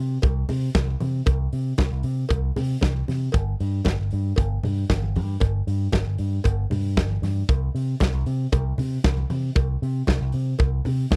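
A picked electric bass run through an envelope filter opens this driving, glamorous disco excerpt at 116 BPM, its amped tone sitting up front and ranging from G1 to C3 from the very start. At 0.2 seconds a modern studio drum kit joins in straight 4/4 with hi-hat, a punchy kick and a medium-tuned snare, alongside very quiet, bright congas played with soft hands and a metallic cowbell. The sound is dry and close in the manner of a 1970s studio, with small room ambience.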